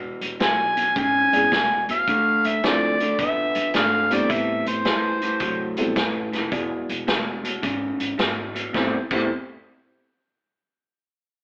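Electric blues shuffle at 108 BPM in A minor, mournful and brooding, with a slightly broken-up guitar riff up front, a growly, woody upright bass in the background, a saturated vintage kit with dark cymbals, an overdriven harmonica with tongue slaps carrying the melody until 5.7 s, and a boxy upright piano entering at 1.3 s, all heard through a stone room and an AM radio sound in this excerpt cut from a longer piece.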